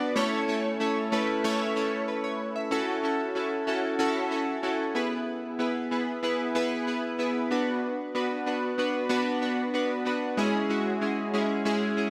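This pop piece is uplifting and romantic, moving at 94 BPM in a straight 4/4 in A major, and it is a short section cut from a longer work. A single part carries it all: retro synth keys playing solo from start to finish, ranging from G#3 to E5. Their tone is glossy and bright, blending pulse and sawtooth waves with pulse-width modulation, a detuned edge and a filter sweep. The notes have a fast attack and then decay, and chorus gives the up-front synth a shimmering quality. A brief opening passage gives way at 2.7 s to a longer second section, with the harmony moving through A, A6, E, Bm and C#m. A moderate, lush hall reverb with a 2.4-second tail surrounds the playing.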